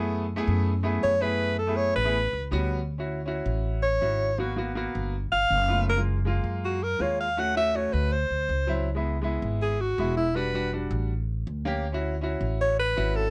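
This Afro-Cuban jazz excerpt is fiery and driving, moving at a brisk 161 BPM in a straight 4/4 and centred on F# minor. A clear concert grand piano supplies the accompaniment in its middle register, with an open sound and deep bass, while a woody upright bass, played pizzicato on steel strings, holds down the low end from the first beat. The alto saxophone enters at 1.0 s as the soloist, carrying the melody with a jazz-style vibrato and a warm tone that sits at the front of the mix. The harmony is rich with extended chords, opening on F#m11 and passing through Dmaj9, G9, D#m7b5 and A7b9 before settling back on Dmaj9 near the close. All three instruments sound close and present, set in a light reverb with a gently rounded top end.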